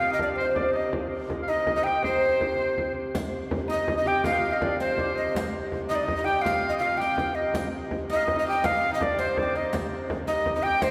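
A breathy, hollow tenor recorder leads this driving, mysterious medieval dance, sitting up front with a chiff, a soft attack and vibrato as it carries the melody between C5 and G5. A bright shawm shares the same range as a second line, its folk-style vibrato and scooped notes set a little farther back, while a delicate fingerpicked lute with gut double strings adds a quieter second line in the background. Beneath them a woody, wheel-bowed hurdy-gurdy holds a low C drone throughout. A warm frame drum played with soft hands comes in at 0.2 s, and a close, dry riq with dark jingles joins at 3.1 s. The piece moves in 6/8 at 109 BPM in C minor, and its lingering church reverb lends this short passage, cut from a longer piece, a resonant, cavernous air.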